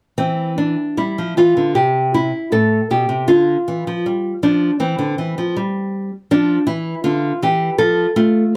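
The rhythm moves in a loose, rubato 4/4 around 79 BPM, giving this brief passage from a longer piece the unhurried sway of a baroque-style dance. It is classical in character and set in C major, with a serene, radiant mood throughout. A solo nylon-string guitar carries everything, fingerpicked and placed up front, its small, warm tone sitting between A2 and A4. The harmony settles on C at the start, shifts to G5/D at 3.3 seconds, and arrives on Dm at 6.3 seconds. Close, detailed microphones catch the acoustic grain of the strings, while a light reverb adds a gentle sense of space around the playing.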